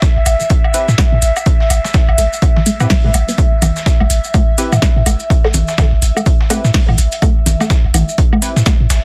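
A squelchy, resonant blip pluck riff opens this cool, hypnotic minimal techno excerpt at 125 BPM in A minor, joined at once by a punchy, tape-warm kick, a gritty sampler-style kit of snare and hi-hat, grainy maracas and an airy, breathy pad holding E5, while a filter sweep runs across the synth throughout. A deep sine sub bass arrives at 0.2 s, and at 0.3 s a layered techno kit with smooth hats enters alongside electronic woodblock and congas through digital delay, before dark, crisp wavetable chord stabs tinted by cassette tape come in at 0.7 s. The pluck carries phaser and dub echo, the pluck, pad and bass all pump with sidechain, and the 16ths swing at 60% under light reverb and a dense, heavily limited modern master.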